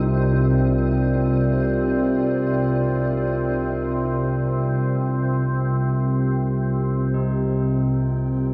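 In free time and rooted on a C minor chord, this brief dark ambient drone feels ominous and desolate, with an organ-like drone sitting up front in the low register while a deep, nasal analog pad holds chorused chords above it. A grainy, flickering texture hovers in the background, and both the pad and the texture fade out over the first 7.1 seconds, after which a filter sweep moves across the drone. At 7.1 seconds solemn, metallic tubular bells enter with faint arpeggios on a single note, all set in a cavernous cathedral reverb with a 5.7-second tail in this fragment of a longer piece.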